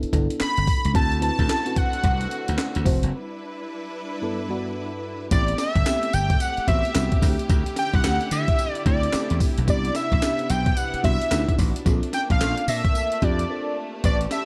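Swinging sixteenths at 110 BPM drive this confident, bouncy new jack swing R&B excerpt, where a gritty, compressed breakbeat kit with thumpy kick, high-tuned snare, handclaps, hi-hat and tambourine sits up front beside a bright, punchy slap bass and a mellow, round FM electric piano treated with chorus and phaser, while a thick, detuned sawtooth unison lead joins at 0.4 seconds and lush bowed strings arrive at 0.9 seconds, with a break at 3.1 seconds before the harmony moves through Am7 and Cmaj9 to Bbmaj9.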